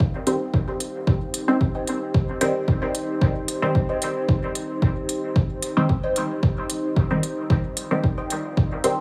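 Dub techno at 112 BPM in C minor, nocturnal and meditative, where a deep, moody pad holds a sustained Cm chord under an overdriven, up-front electronic kick, smooth hi-hats, a muted, detuned sawtooth chord stab with phaser, cassette tape grit and dub echo from 0.3 seconds, and a nasal, mellow second stab riff sitting in the background from 1.5 seconds, the pad and both stabs pumping against the kick in a small, lightly reverberant room.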